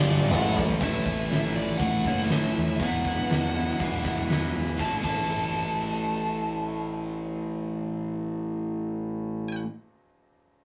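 An oversized, low-tuned acoustic drum kit, gritty and pumping in a bright stone room with a fat snare, punchy kick and dark cymbals, sits up front. It opens this cut from a quiet-loud alternative rock piece with a fill and plays at 120 BPM until 5.2 s. Beneath it, a biting, double-tracked overdriven guitar riffs alongside a fuzzy, picked electric bass, while a crunchy riff guitar in the background drops out at 0.8 s, when a lo-fi, compressed guitar through a small old amp begins arpeggios with spring reverb. Over A major and Esus2 chords, a dark, distorted bluesy lead guitar carries the melody, lending the rough rehearsal-room sound an anthemic, restless mood.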